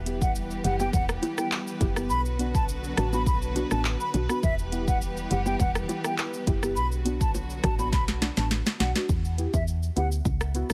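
Bouncy and hypnotic, this dancehall excerpt at 103 BPM in 4/4 moves between Em and Bm, with an up-front afro-pop drum kit of deep kick, sharp snare, metallic hats, rim click, shaker and handclaps bringing a fill from 7.9 to 9.1 seconds, a round, woody FM bass, deep, dark chord stabs with chorus and phaser, an airy, hollow concert flute melody with vibrato and delay, lush bowed strings pumping with sidechain until 9.1 seconds, and very quiet low-tuned bongos, all set in a heavily compressed, radio-like studio sound.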